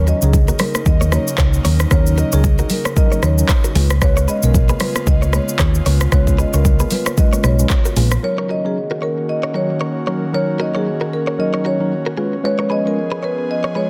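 This excerpt has a digital ambience and a dense, heavily limited modern master, cut from a longer afrobeats piece in Eb minor at 114 BPM with swung sixteenths. The mood is sultry and smooth. A mellow tine electric piano with phaser and an airy, breathy pad with chorus and sidechain pumping hold the chords, moving between Ebm7 and Db7. A bright, direct-recorded clean guitar plays a picked, compressed riff through delay, while a marimba with medium mallets carries the melody, also with delay. Up front, a produced afro-pop kit with a deep kick, dark hats, handclaps, rim click, shaker and soft clipping on the snare drives the groove, joined by a round, punchy hollow-body bass and high-tuned, damped congas in the background. The congas stop just before the kit and bass drop out at 8.2 seconds, leaving the keys, pad, guitar and marimba to float over the same chord changes.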